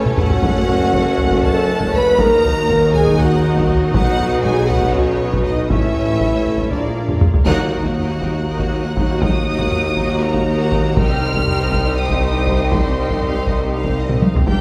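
A dark, relentless cinematic orchestral excerpt in 7/8 at 239 BPM in F# dorian opens with a lush, distant violin section carrying the melody over a clear studio violin line, rich background violas, a smooth string section holding chords and mellow, roomy French horns. Very quiet cellos and double basses sit alongside a tuba in the low register, while an up-front, close and dry taiko ensemble with heavy sticks drives from 0.1 seconds with fills. Soft-malleted, round timpani sound only briefly at 0.4 and 7.5 seconds, the second marking a band accent as the harmony moves to E-flat minor, all within a recital hall reverb.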